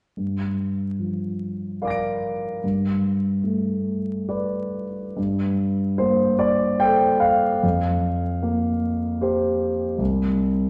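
Classical impressionist solo piano in G minor, this wistful, hazy passage cut from a longer piece moves in a rubato 3/4 at 64-77 BPM, with a warm concert grand ranging from deep bass up to D7 and letting its long sustain ring. The harmony drifts from Gm7 to A9sus4/G, then shifts at 5.2 seconds into a second idea built on Gmadd9 and Fsus24 before the chords dissolve near 10.0 seconds and the piano falls away by 10.7 seconds. Though the piano sits up front, a wet recital-hall reverb and vinyl crackle lend the sound a distant, dreamlike veil.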